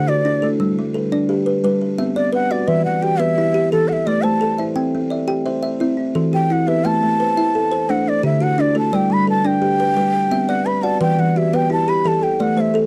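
A steady 12/8 interlocking cycle in the southern African mbira tradition sets a trance-like, hypnotic mood, as a woody kalimba with a short, solid-board thumb pluck and a second kalimba whose hollow box gives a ringing, buzzing tone weave arpeggios beneath a breathy bamboo bansuri melody with vibrato and a crisp attack, all three up front in a dry, close 1970s-style studio sound with light reverb.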